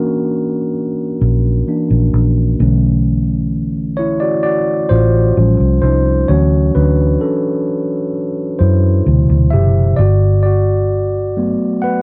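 Contemporary R&B at a slow 65 BPM in D major, this tender, romantic piece is cut from a longer work and features a mellow, clean tine electric piano with a cassette tape effect, playing up front and taking a solo across extended chords such as F#7b13, Bm11 and Dmaj7, while a dark, round, punchy foam-muted fingered electric bass joins at 1.2 seconds, all set in light reverb on a home cassette recording with a faint mains hum.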